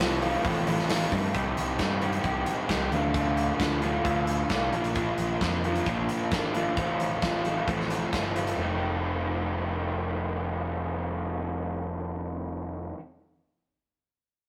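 A straight, driving 4/4 pulse carries this upbeat, jangly indie rock fragment, cut from a longer piece. A raw, overdriven garage guitar sits up front playing the riff. It is double-tracked with a lo-fi edge, and it moves through a run of changes before landing on a dominant chord near the end. Beneath it, a growling picked electric bass with its own overdrive holds down the low end. A big acoustic rock kit, mid-forward and up front, drives the groove with hi-hat, a tight kick and a medium-tuned snare, then drops out at 8.6 seconds so guitar and bass carry the final stretch. A stone room reverb and tube saturation give the whole take the rough, live feel of a rehearsal-room recording.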